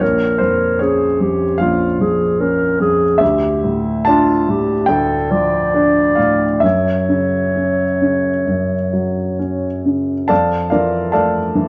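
A moderate studio reverb lends this short cut from a longer piece a gently roomy glow, with both instruments placed up front. In a luminous, pastoral impressionist classical duo moving freely with rubato at 64-76 BPM in 4/4, a dark, distant clarinet sings the melody between F4 and D5 over an intimate concert grand piano whose deep bass and audible action noise give the accompaniment a natural closeness. The harmony drifts from Bbm through Dmadd9 and Gb5, and after the clarinet stops at 9.8 s the piano carries on alone into a brief passage on Fmaj7 that begins at 10.3 s.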